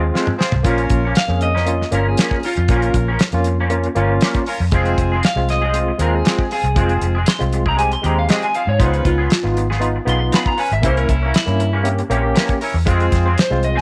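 A small, lightly reverberant room gives this brooding soul blues its intimate, slightly lo-fi sound. The cut is from a longer piece, moving at 118 BPM in F minor with a straight-eighth feel. A damped 70s drum kit sits up front with a fat snare and tight kick, opening with a fill that runs from 0.1 to 0.6 seconds. Beside it, a dark, round, foam-muted fingered bass anchors the low end. A barky tine electric piano with medium tremolo supplies accompaniment through a combo amp, while a slightly broken-up guitar through a small old amp adds picked stabs colored by analog chorus. From 0.4 seconds, a distant, punchy horn section holds bright sustained chords with light vibrato, and from 1.2 seconds a second guitar through a small old amp carries a twangy, compressed line with warbly pitch drift. Beneath them the progression moves from Fm to Bbm, back to Fm, then to Db7 and C7b9 before returning to Fm.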